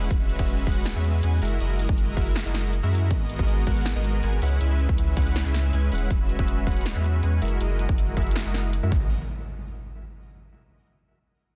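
Future bass in a lush, dreamy half-time feel, where a huge, detuned supersaw riff pumps alongside a deep, saturated sub bass through a filter sweep and digital delay, while a punchy layered kick, snare and hi-hat ring in studio reverb over lush E69, F#13 and G#m9 chords until the drums drop out and an up-front electronic impact lands at 8.9 seconds in this dense, heavily limited excerpt cut from a longer piece.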